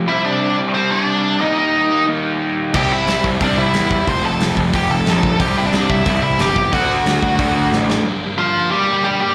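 A straight 4/4 pulse at 181 BPM drives this urgent, angry punk rock clip in G minor, captured live through a club PA with light reverb, where two background rhythm guitars, one crunchy and bright and the other a hollow-body semi-hollow, pick overdriven riffs with slapback echo while an up-front, high-gain lead guitar carries the distorted melody with slapback and tape echo. At 2.7 seconds a growly, fuzz-laden picked bass and a mid-forward, big-room rock kit with a rolled-off top, a punchy kick and a medium-tuned snare crash in, and a drum fill at 7.7 seconds closes the opening section over a C, Eb, F and D progression. The bass, drums and crunchy guitar drop out around 8.1 seconds, leaving the lead and semi-hollow guitars to ring on a G minor chord.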